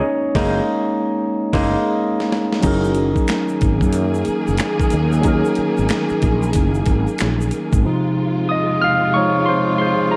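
R&B with a neo-soul lean, this short cut from a longer piece moves at 92 BPM in 4/4 with a swung sixteenth feel, setting a relaxed, sensual mood over a Gb69 chord that later settles onto Dbmaj7. A barky tine electric piano, clean and heard through a combo amp, carries the accompaniment from start to finish and takes solo turns at the opening and again from 7.8 seconds. Beside it, a slightly broken-up, lo-fi electric guitar through a small old amp adds a brief picked second line in the background with subtle chorus, ending by 1.8 seconds. Up front, a growly fretless bass with lush chorus and a dusty, compressed sampler-style kit with a thumpy kick, medium-tuned snare, hi-hat, crash and finger snaps enter at 0.4 seconds, opening with a drum fill and a band accent. From 2.6 seconds a tube shaker and group handclaps sit quietly in a small room behind them, and a studio string section plays smooth-topped, bowed sustained chords with vibrato and portamento, while the whole mix floats in a dreamy plate reverb.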